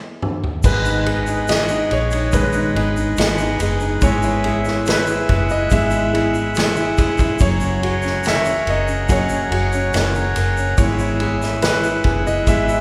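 A clear, intimate concert grand piano carries the melody in this melancholic, emotional pop ballad at 71 BPM in G# minor, its action noise audible as it enters at 0.7 seconds over a G#m, E and F#add9 progression, while a polished grand piano adds present accompaniment. An up-front acoustic drum kit with dark cymbals, tight kick and bundle sticks opens with a fill before the band settles in at 0.6 seconds, joined by a round, punchy, foam-muted vintage electric bass and a brassy, bright pipe organ trumpet stop holding romantic sustained chords. In the background, a warm nylon-string guitar fingerpicks arpeggios with audible finger squeak and a grainy, band-limited egg shaker ticks along, all bathed in a wet church reverb as if played live in one room, in this fragment cut from a longer piece.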